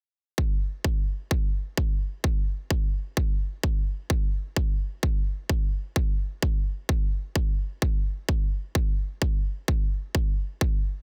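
Triumphant and uplifting, this short EDM cut moves at 129 BPM in a straight 4/4 feel. The only part is an electronic kick drum, which enters at 0.4 seconds and drives the music until 10.7 seconds. Its sound is punchy and layered, with a tape-warm, produced character, and it sits up front in the mix. The room is dry, with little reverb. The master is dense and heavily limited in a modern style, giving the fragment a pressed, forceful presence from start to finish.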